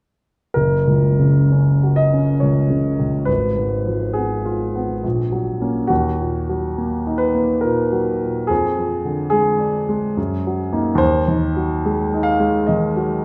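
In a rubato 3/4 lilt at 63-74 BPM, this passionate, hopeful romantic character piece in F# major, cut from a longer work, features a present, polished grand piano alone and up front from 0.5 to 13.2 seconds, spanning F#1 to E#5 and moving from F# through diminished and D# minor harmonies to a G#7/D# close, all set in a wet recital hall reverb, with the tuning at A4 = 444 Hz.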